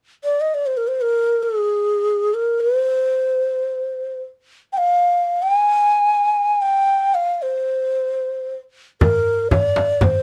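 Longing and soulful, this brief passage from a longer Turkish makam ensemble piece unfolds in free time in makam Ussak on C, tuned to A4 = 440 Hz. A low, end-blown reed-cane ney carries the melody from 0.2 seconds, its breathy, mellow tone colored by vibrato and set up front in the mix, ranging from Ab4 to Ab5. Each note begins with a crisp attack that gives the unaccompanied line clarity against a light reverb. At 9.0 seconds the music moves into a new section as darbuka and frame drum join together, both sitting close and dry. The metal-shelled darbuka sounds large and deep, while the frame drum adds a warm acoustic body beneath the ney as the passage closes at 10.2 seconds.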